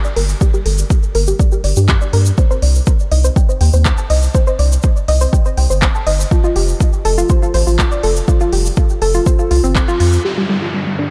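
A soft, round pluck carries this driving, hypnotic melodic techno excerpt, cycling arpeggios in G minor at 122 BPM with a filter sweep across its first ten seconds, a chorus shimmer, sidechain pumping and dub echoes. Beneath it sit a deep, overdriven electronic kick and a round analog bass, both up front, the bass also pumping against the kick as the harmony moves from G minor to C minor and F. A techno drum kit adds handclaps and smooth, tape-warm hi-hats, with low-pass filtering on its snare, hats and small-room sound, while a grainy, close egg shaker ticks along in the background. The band hits an accent at 9.8 seconds, and at 10.2 seconds the chords return to G minor as a fat, mellow analog lead with vibrato and chorus enters over an electronic downlifter. A slow-blooming, detuned analog drone joins just after, and the whole passage is set in light digital ambience.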